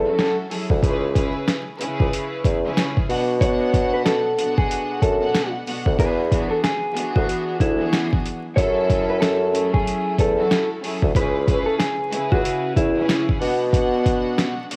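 A dark, clean electric guitar carries the melody from the opening moment, fingered and compressed, filtered and run through cassette tape and an analog delay. Alongside it, a solo bassoon plays the bass line up front with light vibrato in a classical style. A bowed studio string section adds warm accompaniment with a reedy, gut-string, period-style tone and a smooth top, also filtered and softened by tape. The boom-bap drum kit arrives at 0.2 seconds: sampler-style, pitched down and gritty, with a thumpy kick, a medium-tuned snare and hi-hat, compressed and overdriven at the front of the mix. The tough, swung groove moves through minor seventh, minor and dominant seventh chords over small room ambience and vinyl crackle that give it a home cassette feel. The guitar stops at 13.3 seconds, and bassoon, strings and drums close this portion cut from a longer piece.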